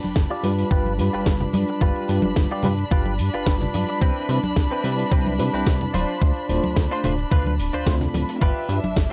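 This feel-good, groovy nu-disco excerpt opens on a dark chamber string section holding soft, sul tasto chords with light vibrato, alongside a glossy, chorused synth bass built from pulse and sawtooth tones with a plucky filter; both pump against the beat. A layered house kit with a cracking snare and metallic hats sits beneath them, while close, dry cabasa and congas played with hard hands stay in the background. A thumpy, sampler-style electronic kick arrives up front at 0.2 seconds, carrying a small room reverb it shares with the kit. A bright, direct-recorded clean guitar riff follows at 0.3 seconds through analog chorus and delay, and a reedy electric piano with fast tremolo adds pumping accompaniment; a filter sweep runs across both of these parts. The harmony moves from G7 to Cmaj7 and Dm7 before returning to G7, all wrapped in a dry, gritty cassette-tape sound with digital ambience.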